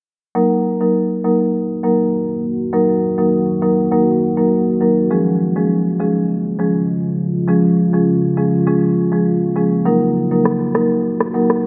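This dancehall excerpt in Eb minor moves at 101 BPM in a straight 4/4, with a tough, sultry mood, and is tuned to A4 = 443 Hz. A marimba played with medium mallets carries the accompaniment from 0.3 seconds, its rosewood bars sounding woody and up front. At 1.7 seconds a deep, dark ambient pad enters beneath it with a slow attack and long release. The pad holds sustained chords built from detuned sawtooth unison and a sine sub octave, colored by chorus, its own reverb and a moving notch. The harmony rests on Ebm, shifts to Db, and returns to Ebm, and an electronic rim click appears only at 10.5 seconds. The whole is set in a lush hall reverb with small room ambience, giving a bright 1980s-style digital sheen tempered by a low-pass filter.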